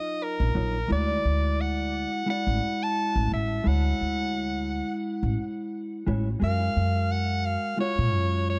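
A dark, warm production with light reverb and a small-room ambience frames this brief cut from a longer sunset chillout piece, smooth and sunny in mood with a lightly swung sixteenth-note feel. An edgy soprano saxophone carries the melody up front, its punchy, forceful jazz-style solo colored by vibrato and a touch of tape echo. Beneath it, a mellow electric guitar plays clean, fingered, compressed accompaniment, its own tape echo adding a soft trail to the chords. An upright bass enters at 0.4 seconds, plucked pizzicato on gut strings with a woody, thumpy presence that sits prominently in the mix. The harmony moves from D#m9 to Dmaj9#11, and a new section arrives at 6.4 seconds on an F#maj9 that carries through to the close at 8.6 seconds.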